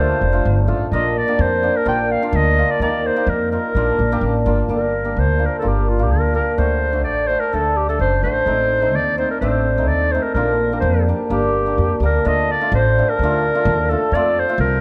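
A breathy clarinet leads this bittersweet, soulful klezmer piece in 2/4, playing an up-front, jazz-style solo with a soft-attack subtone, vibrato and a vintage character. Also up front, a shimmering hammered cimbalom rings out the accompaniment, while a woody, growly pizzicato upright bass on steel strings adds a thumpy low end, and all three play throughout. A recital-hall reverb and a dark, warm production wrap the trio in this passage cut from a longer piece.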